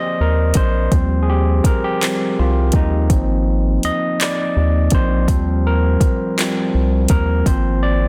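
A slow six-eight R&B groove at 55 BPM in Eb major, this intimate excerpt sways on a smooth, produced drum kit of soft kick, metallic hi-hat and handclaps that enters at 0.5 seconds. A rubbery, hollow square bass with a bouncy filter pluck sits low and up front from 0.2 seconds, while a barky, gritty overdriven tine electric piano, played through a combo amp, carries the piece as a solo from the start, moving between rootless Ab69 and Eb6 chords. The sound is dry and close, with a dense, heavily limited modern master.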